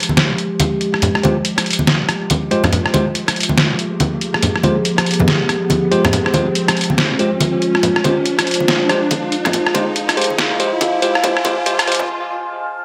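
Deep dubstep at 141 BPM in F minor with a meditative, heavy half-time swing, cut from a longer piece: an evolving, resonant sawtooth drone with chorus holds an Fmadd9 chord under gritty, pitched-down sampler drums of hi-hat, rim click and snare, ringing hard-hand congas with dub echo, and bell-like tine electric piano stabs entering at 1.2 s through a filter sweep, while a background electronic riser builds from 2.2 s to a break at 12.1 s.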